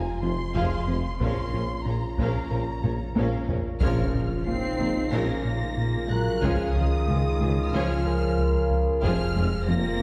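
Cinematic hybrid orchestral and electronic film score, tense and vast, where a lush, expressive violin melody with a second violin line, background violas, cellos, distant double basses, background French horn chords, a distant tuba, a very quiet vintage grand piano, a tine-like synth pluck with chorus and tape echo, a rubbery square bass riff, a deep sub bass and close, dry taiko drums sit in a wet scoring-stage reverb, with a present trombone section and a very quiet electronic impact arriving at 3.8 seconds after a drum fill.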